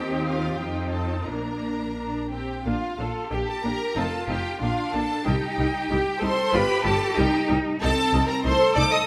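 A quick classical-period movement for string orchestra in Bb major, this short passage from a longer piece moves at roughly 86-97 BPM in 2/4 with a flexible, rubato feel and a cheerful, spirited mood. The first violins carry the melody high above the ensemble with a close, soft-attacked and expressive vibrato, while the second violins play a clear, smooth and even second line beneath them. The violas fill in the accompaniment with a distant, gently gliding portamento, and the cellos and double basses share the bass, the cellos intense with a smooth top and the double basses lush and sliding. The harmony passes through Bb, F7, Cm and G7 before settling on Adim/C near the close, as all five sections play together from the opening to around 9 seconds. A moderate scoring-stage reverb gives the strings a sense of space and a polished studio sheen.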